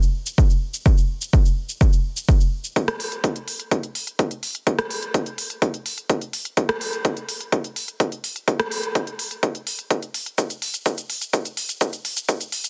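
A dense, heavily limited modern master with light reverb and a digital ambience frames this uplifting, anthemic EDM excerpt at 126 BPM in a straight 4/4. An up-front pop drum kit of crisp, tape-tinged hi-hats, rim clicks and shaker, with soft clipping on the snare, opens the track, and a punchy, layered electronic kick joins at 0.4 s, filtered and re-recorded in a small room. From 2.8 s a build-up with a filter sweep drives toward a drum fill starting at 10.4 s.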